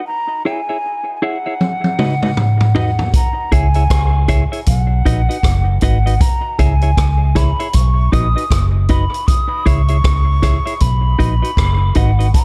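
A mellow, hollow jazz flute opens this hypnotic, spacious dub reggae excerpt at 78 BPM, its airy tone and crisp chiff trailing dub echo above a clean, picked, compressed electric guitar that carries the same echo. A vintage drum kit enters at 1.6 s with a fill, its punchy kick and rolled-off top sitting up front, and a dark, round, foam-muted fingered bass joins at 3.5 s. The harmony rocks between C#m and B over a swung sixteenth feel, with studio reverb lending the mix an open sense of space.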